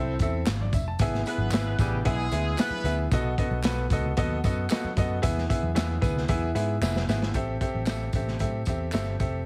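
A crunchy, saturated breakbeat drum kit with a punchy kick and rolled-off top drives this urgent, uptempo 1960s-style soul excerpt at 113 BPM, where a dark, foam-muted picked bass and a brilliant, up-front baby grand piano with audible action noise move from Am through B7 to E, distant roomy horns sound only until 3.0 seconds, very quiet soft-handed congas play alongside tambourine and group handclaps that sit in the background, and a drum fill at 6.8 seconds leads into Am7 under a heavily compressed, radio-like small-room sound.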